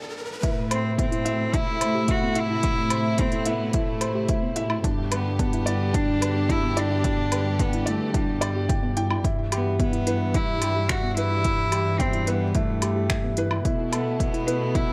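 A felt-muted upright piano opens alone with a soft, intimate riff carrying audible action noise and a touch of delay, and at 0.4 seconds the full arrangement drops in: a punchy, overdriven electronic kick, a tape-warm kit of finger snaps, smooth hi-hat and woodblock, a dark sul tasto cello section on bass, a background string section holding sustained chords, and a round background pluck tracing arpeggios with chorus and delay, the strings, cellos and pluck all pumping against the sidechain. From 0.7 seconds a rich, reedy solo cello with a gut-string, period-style tone sings the melody up front. This cinematic, melancholic piano and strings electronica moves at 109 BPM in a straight 4/4 through Am, G, Em/G and B7sus4, set in light reverb with small room ambience and a faint mains hum, in an excerpt cut from a longer piece.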